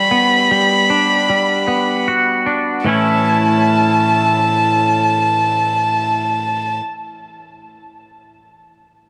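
A dark production with light reverb and a small-room ambience frames this short post-rock fragment, cut from a longer piece, in a soaring, cinematic mood over a straight 4/4 feel. Both parts sit up front and play throughout. A twangy, clean electric guitar carries the arpeggios, picked and compressed, with subtle chorus and a slapback echo. Above it, a single violin sings the melody high in its range with a rich, intimate tone, played sul tasto with an airy bow, soft attack and light vibrato, also touched by slapback echo. The harmony rests on Gmaj7 before moving to A at 2.9 seconds.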